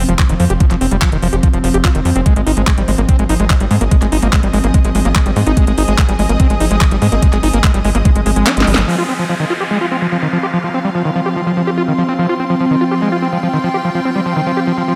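Set in a light reverb, this driving, alien psychedelic trance excerpt puts a knocking electronic kick, a punchy sawtooth sequencer bass and a squelchy, resonant acid line up front, the acid line distorted, chorused and delayed with cassette-tape grit. A tape-tinged garage kit of cracking snare, metallic hats and handclaps plays alongside the kick, while a morphing, detuned wavetable pad with phaser and a bowed, lush string section, fading in over the opening, pump underneath with the acid line. A drum fill from 8.5 seconds and a band accent at 8.7 seconds close the first section, and the kick, bass and kit fall away as an electronic downlifter sinks from 8.9 seconds beneath the pad, strings and screaming acid line.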